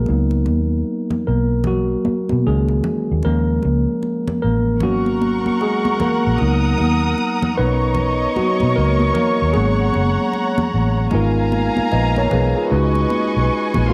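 R&B with a neo-soul lean, this sultry, soulful fragment of a longer piece moves at an unhurried pace with a swung sixteenth-note feel. A clean tine electric piano, heard through its built-in speakers and sitting up front, carries a solo over lush extended chords such as C#13sus4, Bmaj9 and G#m11 until 11.1 seconds. Underneath, a vintage fingered electric bass, foam-muted, round and amped with transformer saturation, anchors the low end. High-tuned congas, struck with hard hands and ringing close and dry, stay in the background. At 4.8 seconds a muted studio string section joins with veiled, con sordino bowed chords and vibrato, and from 11.1 seconds a new section settles onto G#m69 and C#9sus4, all within a moderate echo chamber reverb and small room ambience.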